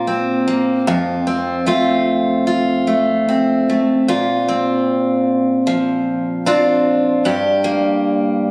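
Hopeful and tender, this brief pop fragment, cut from a longer piece, unfolds at an unhurried 76 BPM in a straight 4/4 feel in Bb major. A lone picked steel-string acoustic guitar carries everything, its full-bodied dreadnought tone sitting up front and ranging from F2 to G4. The harmony opens on Bbsus2 and moves to F, then a second section begins at 4.1 seconds on Bbadd9 before settling onto Gm at 7.3 seconds. A moderate reverb lends a gentle bloom with a 1.9-second tail, while the phone-in-the-room capture adds the intimate ambience of a club. The guitar plays alone for the full 8.5 seconds, giving the moment a close, personal quality.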